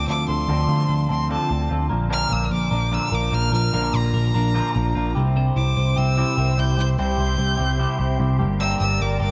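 Indie pop with a bittersweet, restless mood, this excerpt sets an intense, close bowed violin melody over a dark, fingered semi-hollow electric guitar and a bright, twangy twelve-string electric guitar playing arpeggios, both coloured by phaser and tape echo, while a round, punchy muted picked bass sits up front and a swirling, detuned analog pad with phaser and chorus enters at 5.7 s, all moving through Dm7, Bb, C and Gm in an echo-heavy mix with light reverb.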